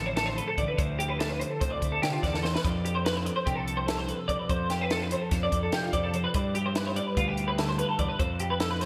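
Bright 1980s-style digital production with a lush hall reverb frames this short, intricate and playful math rock and midwest emo passage in 9/8: an up-front twelve-string electric guitar, twangy and compressed, carries the accompaniment, while a second clean twelve-string in the background, treated with ensemble chorus, picks arpeggios; a growly, fuzz-overdriven fingered bass holds the low end, and a dry compact cocktail kit with a high-tuned snare and punchy kick, touched with gated reverb, enters at 0.2 seconds and plays a fill at 2.3 seconds, all over chords moving from Dm11 to F69, G13 and Fadd9.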